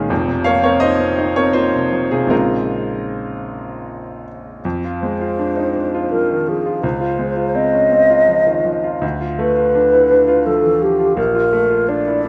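Classical impressionist duo in Bb minor, mysterious and wistful, moving in a rubato 3/4 at 76-85 BPM, where a clear, intimate baby grand piano with audible action noise and long sustain opens alone with extended, colorful harmonies before a hollow, pure alto flute with vibrato and a soft attack enters at 5.0 seconds to carry the melody, both set up front in a moderate concert hall reverb with a dark, warm production in this brief cut from a longer piece.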